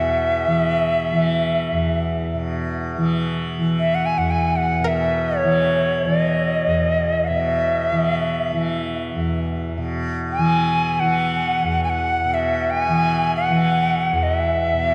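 Unfolding in free time, this spacious, peaceful meditative world piece in E lydian, cut from a longer work, sets an airy, wooden Native American-style cedar flute melody with vibrato and a soft attack, close and up front, over a buzzing, shimmering tanpura drone that sits equally near. From 4.8 to 12.3 seconds a very quiet, twangy, string-like resonator pluck adds a chorused, decaying texture with a filter sweep. A wet cathedral reverb places the sound in a vast, echoing space.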